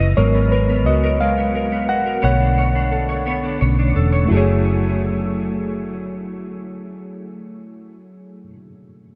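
Slow six-eight R&B in F# minor at 58 BPM, yearning and sultry, with a bright, reedy electric piano pulsing with fast tremolo that takes a solo through the opening 4.3 seconds over G#m9 and Bm9 chords before the harmony settles on F#m9. A dark, clean electric guitar sits up front as a second line, shimmering with ensemble chorus and delay, while a vintage foam-muted fingered bass anchors the low end with a round, punchy tone. The dreamy mix is soaked in a huge ambient reverb with a 6.7-second tail, and this excerpt is cut from a longer piece.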